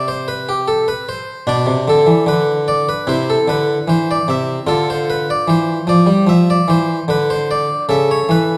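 Radiant and serene, this brief excerpt from a baroque-style classical suite movement features a solo French-style harpsichord with one set of strings, its plucked tone round and full, close-miked and up front, flowing in a rubato 4/4 through chords from Bm7 to Dm to A/C# within a moderate recital hall reverb that gives the whole a dark, warm glow.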